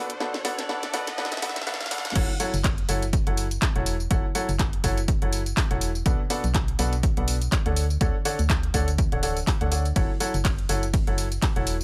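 A dry, high-pass-filtered mix opens this soulful, energetic piano house excerpt in F# minor at 123 BPM with a swung 16th feel. A clear, woody upright piano riff with audible action noise, long sustain, tape echo and sidechain pumping plays over a background riser, veiled con sordino strings and a garage drum kit fill during the short build-up. At 2.2 seconds the drop arrives with a punchy, overdriven analog kick and a hollow, organ-like FM bass that pumps under the piano, while the kit's cracking snare, handclaps, hi-hat, ride, tambourine and crash carry a tape-warm small-room sheen as the chords move from F#m7 through Bm7 and Dmaj7 back to F#m7.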